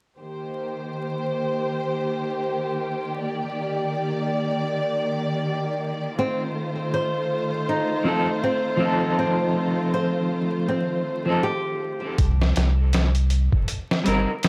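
Smoky and cinematic, this excerpt of trip hop moves at 80 BPM in 4/4 with a swung sixteenth-note feel, set in C dorian over a light reverb and a bed of vinyl crackle. A dark symphonic string section opens alone, holding lush, bowed chords with a woody vibrato that sounds distant yet sits up front, moving from Cm7 to F7 at 6.2 seconds. At that point a fingerpicked flamenco guitar joins with fresh-stringed arpeggios touched by delay, followed by a dark electric guitar at the edge of break-up, its picked accompaniment colored by tremolo and tape echo. At 12.2 seconds the strings and flamenco guitar stop as the music lands on a C5 chord and a sampler-style drum kit enters, compressed and pitched down, with a gritty, thumpy kick, a medium-tuned snare and hi-hat in a small room reverb. Beneath it a round sine sub bass with a fast attack sustains deep, mellow notes, carrying the short closing section to its cut.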